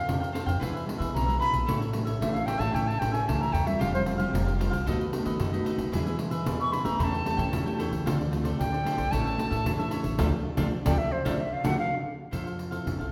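A reedy wooden flute leads this joyful, lively samba and choro excerpt at 113 BPM in straight 4/4, carrying the melody up front with an airy, vibrato-laced tone, soft attack and rolled-off highs. Beneath it, a crisp, bright picked cavaquinho and a fingerpicked classical nylon-string guitar, its finger squeaks audible, lay down the harmony, moving through chords such as Fadd9, A, B7/D#, Dm7 and Fmaj7. A woody pizzicato upright bass on steel strings and a jingly pandeiro struck with hard hands sit close behind, the pandeiro also placed up front. The flute's solo runs to 12.3 seconds, and from 10.2 seconds the band adds an accent over a Dm chord. A wet recital-hall reverb gives the whole ensemble the glow of a church or concert hall.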